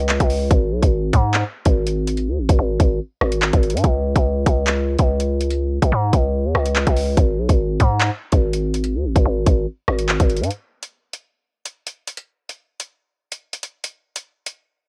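A dry, worn sound with the warbling pitch drift of old cassette tape sets a dark, ominous tone for this drill cut, taken from a longer piece in G# minor. The tempo sits at 144 BPM in 4/4 with a half-time feel, giving the beat a heavy, menacing stride. Up front, a growling 808-style bass with a buzzy, saturated sine tone and a fast attack that decays spans G#1 to G#2. The electronic drill kit, also up front and tape-warm, combines a hard-clipped kick, metallic hi-hats, handclaps and rim clicks. At 10.5 seconds the bass drops away, leaving the drums alone until they stop at 14.6 seconds.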